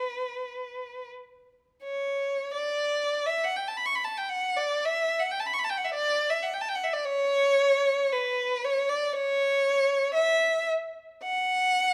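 Freely paced in a rubato 4/4, this short cut from a longer classical piece for unaccompanied violin feels yearning and meditative. A single bowed violin carries the whole passage from 0.0 to 11.9 seconds, its rich, expressive tone colored by vibrato and portamento, with a new section opening at 2.5 seconds. Close, detailed microphones keep the instrument up front, while light reverb adds a faint sense of space.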